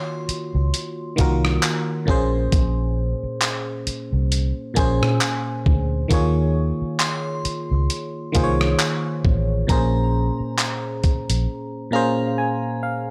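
A swung sixteenth-note groove from a gritty, compressed sampler-style soul drum kit with thumpy kick, hi-hat, rim click and handclaps, together with a round, punchy, foam-muted electric bass, drives this moody, longing contemporary R&B excerpt, while a warbling vintage FM electric piano with a bell-like attack carries the chords alongside a crystalline synth bell trailing tape echo, until drums and bass stop at 11.5 seconds and the electric piano plays a fill with the synth bell to 13.1 seconds.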